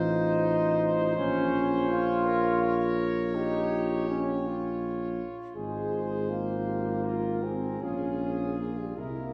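Heard from further back in a concert hall, this brief excerpt of a brass band piece is bathed in a wet, lingering reverb of about 1.9 seconds. It is a solemn, yearning hymn in 12/8, moving slowly at 50-57 BPM in dotted quarters with a flexible, rubato feel. A bright, punchy trumpet section carries the melody in a tight, close-miked sound, and a mellow flugelhorn, distant and roomy, joins with a second line from 0.1 seconds. Beneath them, a warm trombone with light vibrato and a vintage character shares the accompaniment with a euphonium that sits in the background, while a dark tuba, close-miked and up front, anchors the bass. The harmony moves from F7 over A to B-flat minor at 1.2 seconds, then to F minor over A-flat at 5.5 seconds, settling on B-flat minor seventh before the fragment breaks off at 9.3 seconds.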